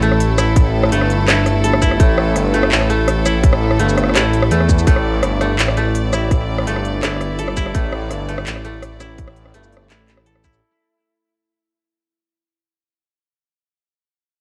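Recorded at home on cassette with a digital ambience, this dark, spacious half-time drum and bass excerpt at 167 BPM sets clear, earthy chamber strings holding bowed chords with light vibrato and sidechain pumping beside a dry, woody koto playing fingerpicked arpeggios through tape echo, a deep, rumbling detuned saw bass sitting up front with tube saturation, and a crisp-hatted kit of handclaps, hi-hat, rim click and shaker joined at 0.6 seconds by a tight electronic kick, both drum parts carrying a cassette tint, as the drop fades out from 4.9 seconds and the koto rings on alone until 12.7 seconds.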